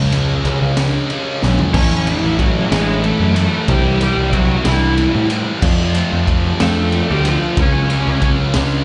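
A round, up-front fuzz bass anchors this anthemic, restless quiet-loud alternative rock passage in 6/8. Alongside it play a bright high-gain guitar with slapback echo, a thick fuzz guitar set in the background, and a raw garage drum kit with a high-tuned snare, boomy kick and dark cymbals in a pumping small room. After a drum fill from 1.4 to 1.7 seconds, a biting, overdriven lead guitar takes the melody over chords moving through C#, A, C and F, all heard as a live club gig through the venue's PA with a dulled top end.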